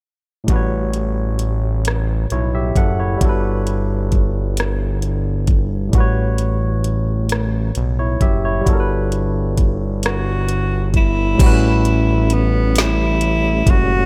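Bathed in light digital reverb, this tender excerpt of slow six-eight R&B at 44 BPM alternates A13 and Gmaj9 chords as a barky tine electric piano through a combo amp and a fat, detuned sawtooth analog bass sit over an up-front electronic drum kit with a knocking kick, woody snare and metallic hats, before a warm, jazz-style tenor saxophone solo with light vibrato and a smooth top enters at 10.1 s and a very quiet tonewheel organ adds sustained rotary-speaker chords from 11.4 s.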